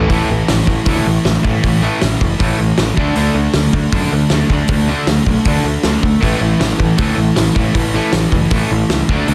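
A straight 4/4 punk rock pulse comes from a loose, roomy drum kit with a fat snare and punchy kick sitting up front, alongside a growling overdriven bass, while a double-tracked distorted guitar and a warmer overdriven guitar play riffs in the background and a very quiet, bright garage guitar adds its own riff over A5 and D5 chords, giving this dry, densely mastered excerpt a rebellious, rowdy snarl.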